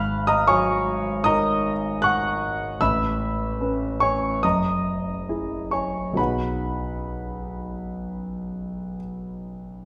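Bathed in the wet reverb of a recital hall, this 9.8-second excerpt of serene, luminous impressionist solo piano sets an intimate, up-front concert grand, with deep bass and audible action noise, spanning F#1 to F#6 in B major at a rubato 63-78 BPM in 4/4, tuned to A4 = 437 Hz and moving through G#m9, Aadd9, F#sus2 and B6.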